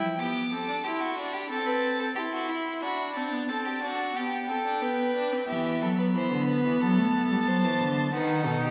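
Heard from further back on a reverberant scoring stage, this driving, solemn baroque-style fugue for string quartet sets a rich, vibrato-laden first violin singing the melody high above a smooth second violin line entering at 0.2 s and a clear, focused viola accompaniment, while the close, bowed cello sounds only briefly at the start before returning at 5.5 s to carry the bass through to the end of this fragment of a longer piece.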